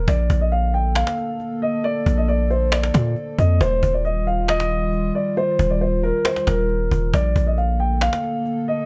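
A lightly reverberant mix sets a wistful, dreamy tone for this short trap-leaning hip hop cut, taken from a longer piece and moving in a relaxed half-time feel. A dark, boxy baby grand piano carries the melody up front, its long sustain softened by a low-pass filter and trailed by plate reverb and tape echo. Underneath, a deep, sine-toned 808-style bass with a fast attack and mellow decay sits up front, sounding from the start until 8.1 seconds. Entering at 0.4 seconds, a moody analog pad holds sustained chords with a slow attack, detuned square, sawtooth and triangle layers, a sub octave, a moving notch and a chorus shimmer. A woody, close and dry cajon with faint snares keeps time as the harmony moves from Bbmaj7 to Ebadd9 and back to Bbmaj7.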